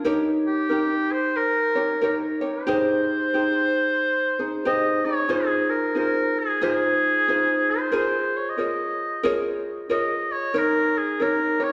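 A light, fingerpicked acoustic ukulele opens this relaxed, languid Hawaiian piece in Ab major, swinging gently at 92 BPM, and a solo oboe with a warm tone, light vibrato and tape echo takes the classical-style melody from 0.5 seconds. The harmony drifts through Eb7, Abmaj7, Ab6 and Db6 before returning to Eb7 near 10.5 seconds, with the tune moving into a second section at 5.3 seconds. Both parts sit up front, yet the roomy recital-hall reverb places the oboe at a distance, as if heard from further back in the hall, and this short extract is cut from a longer work.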